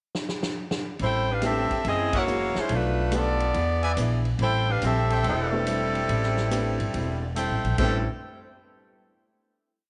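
A swung 4/4 groove opens this short, complete big band swing piece, with the drum kit sounding alone in a pickup bar that holds a fill before the ride cymbal pattern settles in; the kit is acoustic and natural, with a punchy kick and a medium-tuned snare in a big room. At 1.0 seconds the band arrives: an upright bass plays a woody, thumpy two-feel line on gut strings up front, while a hollow-body electric guitar strums dark, clean, compressed jazz chord shapes four to the bar in the background. A warm, boxy upright piano joins just after with syncopated quartal comping, also set back in the mix. The edgy, close-miked saxophone section carries a sultry, motif-based melody in four-part block voicing with light vibrato. At 2.1 seconds a bright, tight trumpet section lands on a band accent and then punches in brassy syncopated stabs in close voicings, as the minor-key changes move through a short turnaround toward a final held chord, all wrapped in light, small-room reverb.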